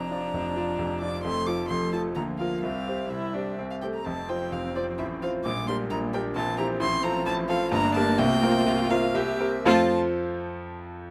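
In a rubato 3/4 at 116-134 BPM, this dramatic, urgent classical-period piano quartet movement in F major sets a rich, floating solo violin melody bowed sul tasto over a smooth-topped cello second line and an intimate, airy-bowed viola in the background, while a bright, up-front grand piano accompanies in light reverb and carries on alone from 9.9 s to 11.1 s.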